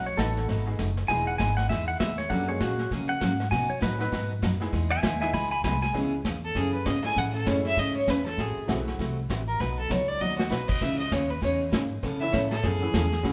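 A live band sound fills a large studio room with moderate reverb in this swinging, cheerful western swing excerpt. A twangy, compressed lap steel guitar leads with a clean slide line until 5.9 seconds, before a biting, airy fiddle with light vibrato takes the melody from 6.4 seconds. Underneath, a bright dreadnought acoustic guitar, a woody, thumpy upright bass and a vintage brush kit with dark cymbals keep the swing going, with a drum fill at 10.2 seconds, while a detuned, jangly honky-tonk upright piano sits in the background.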